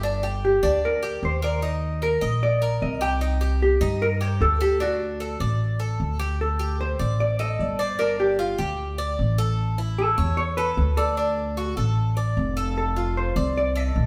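Latin Cuban son and guajira with a warm, nostalgic mood, cut from a longer piece, where a woody, thumpy pizzicato upright bass on gut strings sits up front beside a dark, clean, fingered hollow-body electric jazz guitar carrying the melody from 0.4 s, while a picked acoustic Cuban tres with metallic double strings, some octave-doubled, plays quieter arpeggios, the band heard live together in one room washed by a wet stone reverb.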